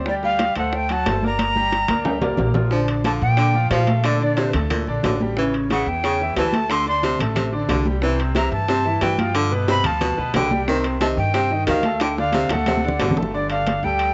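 Fiery and danceable, this salsa cut from a longer piece drives along at 181 BPM in a straight 4/4, set in G minor with a lo-fi, cassette-tape character that rolls off the top end, plus a light reverb. A breathy, metal-bodied jazz flute carries the melody from the start, its crisp attack, chiff and vibrato riding high over a bright, brilliant concert grand that comps with open, long-sustaining chords and deep bass. Beneath them a woody, thumpy upright bass on gut strings sits up front, plucked pizzicato. The percussion blends damped, high-tuned congas played with soft hands and round, low-tuned bongos struck with hard hands, both tucked in the background, while ringing metal-shell timbales sound compressed and saturated, and drum fills arrive around 1.4 and 12.0 seconds. At 2.7 seconds a breathy baritone saxophone enters with a pop-style second line full of vibrato, as the harmony moves through chords such as Bb, A7, G7 and Cm before settling on D.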